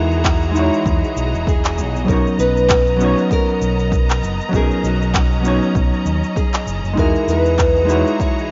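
Relaxed and warm, this short sunset chillout excerpt moves at 98 BPM in 4/4 with a gentle swung sixteenth feel, settled in B major. A fingerpicked nylon-string guitar carries the melody with a classical touch, while a dark, clean hollow-body jazz guitar sits up front in the accompaniment, both parts treated with digital delay. Behind them, a bright, lush studio string section holds sustained bowed chords with vibrato and an intense ensemble sheen. The low end comes from a round, punchy overdriven fingered electric bass, joined by a layered electronic kick with a small-room ambience and an overdriven electronic shaker and handclaps that enter at 0.1 seconds. The harmony drifts from Emaj9#11 to Bmaj9 at 2.1 seconds and back to Emaj9#11 at 7.0 seconds, all under light reverb in a rough, muffled home-demo mix.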